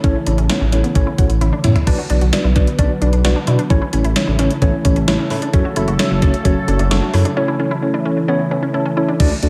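A straight 4/4 synth-pop pulse at 131 BPM drives this nostalgic, wistful excerpt, where a thumpy, gated 80s digital drum machine with tape echo rolls through a fill at 1.4 seconds, a smooth sawtooth synth bass sits up front, a mellow tine electric piano with tape echo adds a fill near 8.5 seconds, a detuned, evolving pad with chorus sustains the chords A, Bm and F#m, and a punchy unison pluck traces arpeggios, all bathed in spring reverb and digital ambience.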